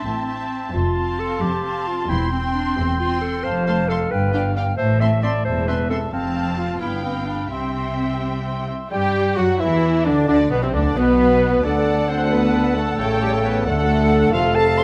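A lively, cheerful classical-period orchestral movement in a quick 6/8 at 89 BPM, this excerpt moves from C major to G major at 8.9 s. A violin section carries the melody with a lush, distant, vibrato-rich sound, while a second violin line sits in the background with soft attacks and expressive portamento. Airy silver flute, clear clarinet and mellow cor anglais add further lines alongside the viola section's smooth, focused accompaniment. Rich cellos and even-toned double basses anchor the bass from 0.1 s, and at 8.9 s a mellow bassoon and a French horn section holding sustained chords join for the second section. The harmony passes from A minor through F and G7 to C, then turns toward D with a brief chordless moment at 11.0 s, all set in a moderate recital-hall reverb.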